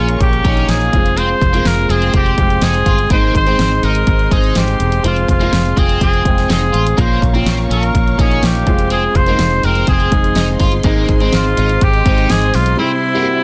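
A dense, heavily limited modern mix with light reverb and small-room ambience frames this bittersweet, earnest piano-driven pop fragment, cut from a longer piece and moving at 124 BPM in a straight 4/4 in F minor. Up front, a clear trumpet carries the melody in a vintage pop style, with light vibrato and scooped notes. A woody upright piano with long sustain drives the accompaniment, while a biting, double-tracked overdriven guitar plays a picked riff. Beneath them sit a dark, round, foam-muted fingered electric bass and a layered electronic drum kit, whose punchy kick and fat snare play alongside the hi-hat. A lush, very quiet studio string section holds smooth, intimate sustained chords, bowed sul tasto, as the harmony cycles through Bbm, Fm and Ab before a brief break at 12.8 seconds lands on C.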